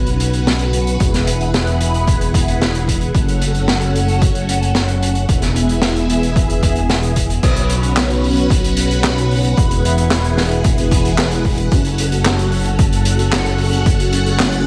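Moody and cinematic, this synthwave passage cut from a longer piece sets a lush string machine's sustained chords, colored by phaser, ensemble chorus and sidechain pumping, over a glossy, detuned chorused synth bass, while a gritty garage kit of dark cymbals, handclaps, hi-hat and a high-tuned snare is joined at 1.0 s by a punchy, tape-warm electronic kick, all in light reverb.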